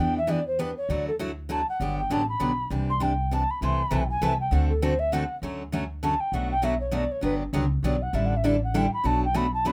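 A light reverb gives this short excerpt from a longer piece of acoustic string swing a gentle sense of space, with the guitar and bass sitting up front. At a brisk 199 BPM in 3/4 with a swung eighth-note feel, the music has a charming, playful character and settles into D major from 5.4 s. An alto ocarina carries the melody throughout, its clay tone airy and warm with rolled-off highs, shaped by vibrato and tongued notes in an expressive solo. A picked steel-string acoustic guitar provides the accompaniment with a bright, full-bodied jumbo sound and fresh strings, moving through chords such as Em7, Gmaj7, Amadd9 and D7 before turning to Dmaj7, Bm7 and A7sus4. Underneath, a pizzicato upright bass with gut strings adds a woody, thumpy foundation in its low register.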